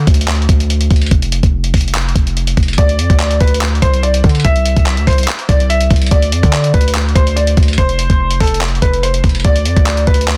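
Hip hop trap excerpt at 144 BPM in a half-time feel, dark and brooding, where a distorted, aggressive 808-style bass and a gritty, compressed soul sampler-style drum kit with thumpy kick, hi-hat, handclaps and a soft-clipped snare drive an opening break before a soft, felt-muted upright piano enters at 2.8 seconds with an intimate melody, all held dry and dense in a heavily limited modern master.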